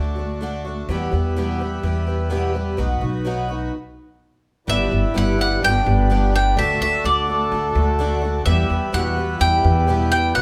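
This excerpt opens with a shimmering, octave-doubled twelve-string acoustic guitar picking out the accompaniment, a reedy, breathing harmonium holding sustained chords beneath it, and a woody, thumpy upright bass played pizzicato up front. It is nostalgic, anthemic indie folk in G major at 127 BPM in a straight 4/4, and the opening passage builds before the band stops from 3.7 to 4.7 seconds. At 4.7 seconds a bright bowl-back mandolin enters with the melody, its picked double strings sitting high and up front, while a trombone adds a second line with light vibrato and a soft attack in a close, classical style. The chords move from D through Em and B in the opening, then from G to D and Em once the melody arrives. The band plays live in one room, with a moderate large-studio reverb lending space to the arrangement as it fills out.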